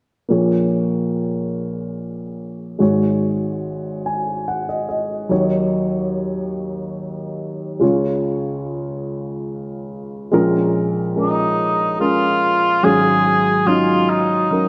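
A slow, straight 3/4 pulse at 72 BPM carries this short folk excerpt in Bb minor, intimate and reflective in mood. A dark, woody upright piano holds the accompaniment throughout, ranging from Ab1 up to Ab5 with long sustain, moving through Bbm7, Ab7sus4, Ebm7 and Db before the progression returns to Bbm7 for a second section at 10.3 seconds. At 11.2 seconds a mellow cor anglais enters with the melody, played in a classical style with light vibrato and kept within the narrow span of Eb4 to Ab4. Its solo line sits up front yet sounds distant and roomy, touched by analog delay. A lush hall reverb with a 1.9-second decay soaks the mix, giving the whole recording a dreamy, wet atmosphere before it is cut off at 14.7 seconds.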